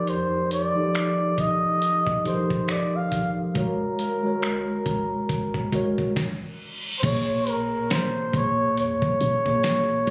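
Captured on a phone in the room, this short cut from a longer piece sits in light club reverb and digital ambience, with compression holding it together. It is a longing, moody contemporary R&B groove in Bb minor at a slow 69 BPM in 4/4, with a 16th-note swing. Up front, a bucket-muted trumpet carries a veiled, breathy solo melody in a jazz style, its scooped, whispered notes touched by digital delay, while a mellow tine electric piano plays accompaniment through its built-in speakers over F9sus4 and Ab9sus4 chords. Down in the background, a clean 808-style bass gives deep, boomy sine tones with a fast attack. A gritty, sampler-style soul drum kit, re-recorded in a large room, adds a thumpy kick, fat snare, hi-hat, finger snaps and crash cymbal. The band stops at 6.2 seconds as an electronic reverse cymbal rises in at 6.5 seconds, leading into a new section on Bbm7 at 7.0 seconds.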